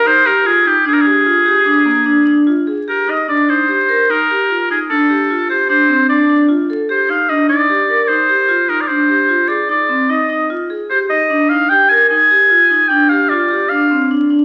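Contemporary instrumental music at a brisk 150 BPM in a straight 5/4, with a playful, restless mood and a harmony that moves from Abmaj13 through Eb6, Dm7 and Fm7 before settling on Dm. A clear, classical-style solo oboe with light vibrato carries the melody up front, while a metallic, ringing vibraphone played with medium hard mallets and the motor off spins arpeggios beneath it from 0.1 seconds. The duo sits in a reverberant recital hall, and the whole passage sounds as if played from a very old 78 rpm record full of vinyl crackle, cut from a longer piece.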